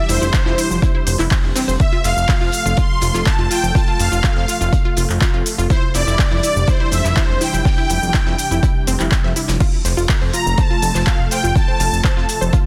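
Uplifting and expansive, this progressive house excerpt moves at 123 BPM in F major, cycling between Cadd9/F and F chords while a smooth, detuned supersaw carries the melody with delay and sidechain pumping over a fat, thick analog bass that sits up front. A bright, lush unison pluck spins arpeggios through delay and cassette-tape colouring, while an airy, breathy pad holds sustained chords in the background with chorus. A punchy electronic kick arrives at 0.3 seconds, layered with a deep house kit of smooth hats, crash, handclaps and shaker, plus a very quiet, gritty breakbeat kit adding hi-hat and a saturated snare, all in a dense, heavily limited mix with little reverb.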